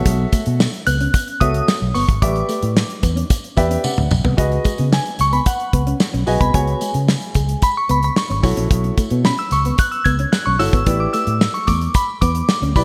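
Early-eighties boogie funk at 111 BPM in C# minor, this funky, danceable excerpt rides on a growly, punchy fingered bass and a damped 70s drum kit with a tight kick, both up front, while a dark, clean electric guitar riff with subtle chorus and a jingly tambourine sit in the background. A natural-sounding baby grand piano plays accompaniment over suspended ninth chords, adding a fill alongside a drum fill just before 4.4 seconds. From there a glassy, crystalline FM synth bell, warbling with chorus and tremolo, takes a solo to the end, all set in a lush hall reverb with bright 1980s-style digital polish.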